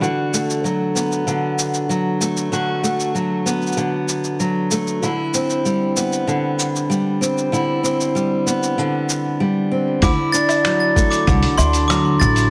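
The recording sits in a light studio reverb, with an up-front acoustic guitar leading this warm, pastoral folktronica fragment cut from a longer piece. The guitar's fingerpicked arpeggios on fresh steel strings ring bright, with audible finger squeak, softened by a low-pass filter and trailed by delay. Beneath it, a lo-fi sampler-style kit of cabasa, finger snaps, hi-hat and woodblock sounds pitched down, muffled and overdriven, as if re-recorded in a small room. The harmony moves from Bm7/D to Cmaj7/D before settling on Dadd9 at 10.0 s, where a pizzicato upright bass enters, woody and dark, alongside a compressed, thumpy electronic kick with its own grit of overdrive. At the same moment, a glockenspiel struck with brass mallets adds a sparkling, bell-like second line high above, close-miked and dry apart from a touch of delay.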